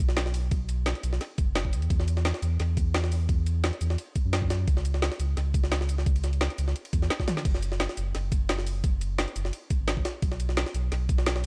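A knocking, overdriven electronic kick sits up front over a deep, full sub bass with octave, a layered drum and bass kit with a woody snare, bright hats, shaker, toms and crash, and a gritty, pitched-up jungle sampler kit with a high-tuned snare and filtered cymbals, all at 173 BPM in this dreamy, soulful liquid drum and bass cut with a dark production, little reverb and a drum fill at 7.3 seconds.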